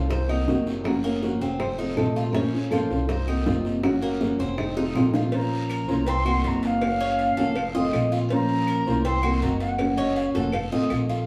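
Latin Cuban son and guajira at a danceable 161 BPM in Bb harmonic minor, this excerpt from a longer piece sets an up-front, thumb-plucked flamenco guitar and a thumpy gut-string pizzicato upright bass beneath bright, metallic double-string tres arpeggios, with a raspy guiro, tight, high-tuned bongos and cowbell and woody, saturated claves in the background, while a dark, fingerpicked nylon-string guitar carries a second line until an airy, distant silver concert flute with vibrato and plate reverb takes the melody at 5.3 seconds, and the nylon-string guitar returns at 10.0 seconds, all heard from further back in a small, reverberant room.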